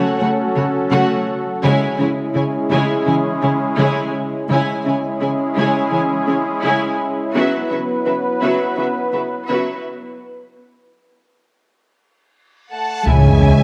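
A tense, relentless hybrid orchestral and electronic film score cue at 84 BPM in C# minor, it opens with an up-front sweeping, detuned resonant pad, a round, tine-like thumb-piano-like synth pluck arpeggiating through chorus and tape echo, lush dark studio violins, intense clear violas and distant, woody cellos holding the bass. A filter sweep drives a long build-up that drops into a break at 10.2 seconds; at 12.7 seconds warm, expressive symphonic violins take the melody over mellow French horns. A huge reverse cymbal and sub drop lead to an impact at 13.1 seconds, where mellow trombones join and a smooth sawtooth synth bass and rich double basses land on C# minor, all set in a concert hall reverb with a dark production.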